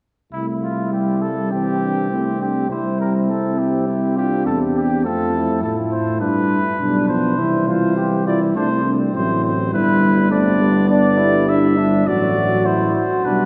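Bathed in the long, wet reverb of a church, this noble, triumphant classical brass quintet excerpt moves at 102 BPM in C major before turning to G major at 9.7 s, with a warm, vintage trumpet carrying the melody up front over a smooth, mellow flugelhorn second line, a dark euphonium in the background, a tuba bass with light vibrato, and a distant, soft-attacked French horn that joins at 1.5 s.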